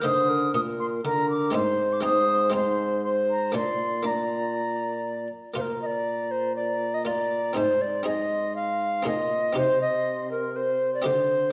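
An airy, distant concert flute carries the melody of this festive, courtly renaissance-style consort dance in Bb mixolydian at 120 BPM, joined from the start by a woody tenor recorder with audible chiff and vibrato playing an up-front second line, a muted, lute-like buff-stop harpsichord accompaniment, and a mellow trombone bass with light vibrato, set in a reverberant recital hall, with a second section arriving at 5.6 s before the excerpt breaks off at 11.5 s.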